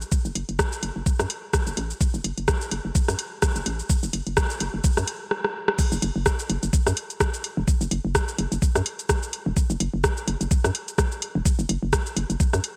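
Bright, 1980s-style digital production with light reverb and a digital ambience frames this cool, sparse minimal techno fragment, cut from a longer piece and set to a swung 16th-note feel. An up-front, overdriven electronic kick with a layered knock sits alongside a booming analog drum machine with metallic hi-hats, crash cymbal, rim click and shaker, while a hollow, bouncy FM bass with a fast attack and decaying tail pumps against the sidechain. The opening build-up ends in a drum fill from 5.3 to 5.8 seconds before the drop arrives at 5.8 seconds.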